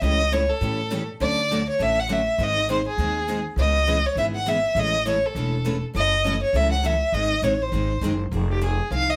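Recorded live in one room with a moderate studio reverb, this brisk, bittersweet jazz manouche fragment swings at 202 BPM, moving through chords such as A7/C#, Dmaj7 and C#m7. A warm, bowed violin sits up front with the melody, colored by vibrato and portamento, while a dark, thumpy upright bass with gut strings, played pizzicato, anchors the low end. Two picked steel-string acoustic guitars fill out the accompaniment: a warm one sits in the background, and a bright one stops at 8.1 seconds, just before the cut.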